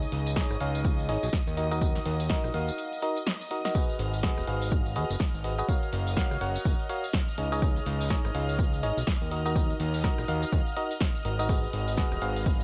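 A barking, biting FM electric piano riff with chorus and dub echo opens this soulful, bittersweet piano house piece together with smooth, sustained symphonic string chords, a fat, saturated sawtooth bass and a punchy analog drum machine of hi-hat, rim click, snare and tambourine. The strings, piano and bass each pump against a tape-warm electronic kick that enters at 0.4 seconds, with a drum fill at 3.3 seconds and light reverb over the swung groove.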